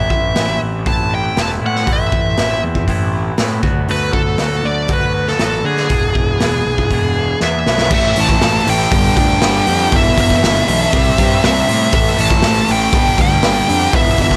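Quiet-loud alternative rock excerpt at 119 BPM in 4/4, angsty and dark, opening in A dorian with a twangy, clean electric guitar picking arpeggios beneath a dark, high-gain lead guitar melody carrying tape echo, a growly fuzz bass and a raw garage drum kit with boomy kick, dark cymbals and a gritty, rolled-off top in a small pumping room, until a drum fill at 7.4 seconds brings the shift to A minor at 7.9 seconds, where the arpeggios stop and a thick, double-tracked fuzz guitar riff crashes in up front over A5, G5, Em/G and C.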